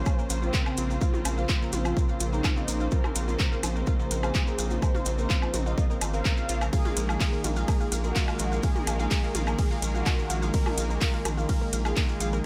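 A straight 4/4 pulse at 126 BPM drives this dark, hypnotic melodic techno passage in Bb minor, tuned to A4 = 435 Hz, with a punchy, tape-warmed electronic kick up front and a house kit of handclaps, metallic hi-hats, ride cymbal, toms and woodblock, joined by grainy acoustic maracas from 0.1 s. A deep, round analog bass sits low and forward, while a mellow, detuned synth brass carries the melody through chorus, phaser and tape echo. Behind them, bold brassy pad stabs with delay, bright detuned pluck arpeggios and a veiled, muted string section on soft-attack sustained chords all pump with the sidechain over a Bbmadd9 that shifts to Absus2/Bb at 6.7 s, in a dry mix cut from a longer piece.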